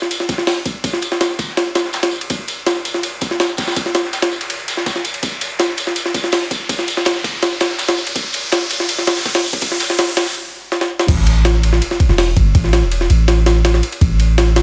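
Straight 4/4 breakbeats at 164 BPM drive this nostalgic, frenetic drum and bass and jungle excerpt: an up-front, overdriven, sampler-style kit of thumpy kick, high-tuned snare, hi-hat, ride and crash carries the build-up, while a dark, saturated acoustic breakbeat kit with tambourine sits in the background and an electronic riser runs behind them, until a brief stop and drum fill give way at 11.1 s to the drop, where a deep, mellow 808-style sine bass enters up front with a long, decaying tone beneath a sub-drop impact, all within a studio ambience.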